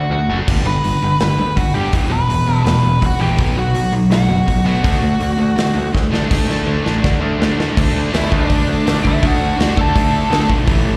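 A half-time 4/4 pulse at 165 BPM drives this raw, urgent punk rock excerpt, where a big acoustic rock kit with a punchy kick and bright cymbals sits up front from 0.5 seconds, a growly overdriven picked bass holds the bass line while two picked rhythm guitars, one distorted and one overdriven, both with slapback echo, churn riffs in the background over G, Em, B5 and D, a biting lead guitar with overdrive and slapback echo carries the melody until 5.9 seconds and returns at 8.1, and drum fills lead out of the half-time feel, the whole heard as a live gig through the venue's PA with recital hall reverb.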